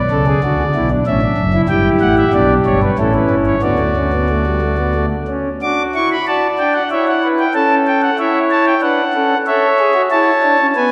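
A solo pipe organ on a principal stop, smooth and up front with chiff, drives this solemn baroque-style four-part fugue in D major at 94 BPM in 3/4, its lines reaching from a deep F#1 to a high D6 and blooming into a wet church reverb over a short passage cut from a longer piece that moves from B minor through a cadence onto D by 3.6 seconds before a second section begins at 5.6 seconds and closes on A.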